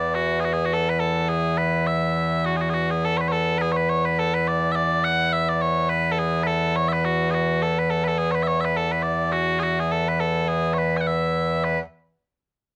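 Lively and rollicking, this Celtic folk excerpt moves with a swung lilt in four. Small bagpipes carry the whole tune alone and up front, their mellow, sweet tone sounding continuously with vibrato from 0.0 to 11.8 s across a range from E2 to G#5. The dry, close sound keeps the pipes intimate, and a new section starts at 11.6 s just before the piece is cut off.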